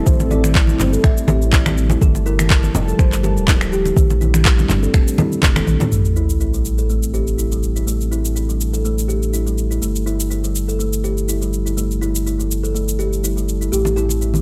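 Afro house with a driving, warm mood: a woody, hollow kalimba arpeggio and a ringing, boxy kalimba melody ride over a deep, round sine sub bass up front and a moody, detuned sawtooth analog pad with a slow attack sitting dark in the background, the pad, arpeggio and bass all pumping against the beat. A produced afro-pop kit of cabasa, finger snaps, handclaps and toms swings alongside hard-handed, close and dry congas and a deep electronic kick until the kick drops out at 5.5 seconds and a drum fill leads into a background sub drop impact at 5.9 seconds. From there a filter sweep moves across the low-passed, delayed kalimba arpeggio, and the melody kalimba and congas return at 13.7 and 13.8 seconds, all in a dry, gritty hardware sound.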